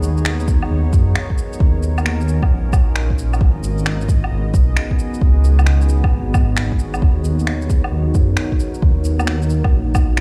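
Nocturnal and rainy, this future garage fragment at 133 BPM with a swung 16th-note feel sets a deep, mellow ambient pad, treated with chorus, built-in reverb and sidechain pumping, over a rumbling, detuned saw bass that also pumps, electronic shaker, finger snaps and woodblock, and an overdriven, up-front kick entering at 0.5 s, the mix heard through a big sound system in a bare stone room as the chords move from Bmaj9/D# through D#m9, G#m7 and C#9sus4.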